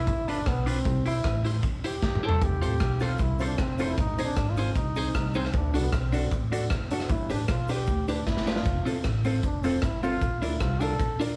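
Vinyl crackle and a small room's light reverb frame this cheerful, upbeat ska excerpt, which moves at 154 BPM in a straight 4/4. A clear trombone with a smooth top and vibrato carries the solo melody from the very start, its punchy pop-style line touched with slapback echo. Up front, a raw garage drum kit sounds gritty and saturated, with a punchy kick, a medium-tuned snare, rim clicks, hi-hat and toms ringing in a bright, pumping stone room, plus brief fills at 2.0 and 8.3 seconds. Beneath it, a thumpy, woody upright bass plucks gut strings, while a clean, compressed electric guitar picks accompaniment through a phaser. At 2.4 seconds a grainy, very quiet cabasa enters, and at 2.6 seconds a dark, mellow upright piano adds stabs with long sustain, as the chords move from G7 and C through F, Ab, D, G and F to close on Bb.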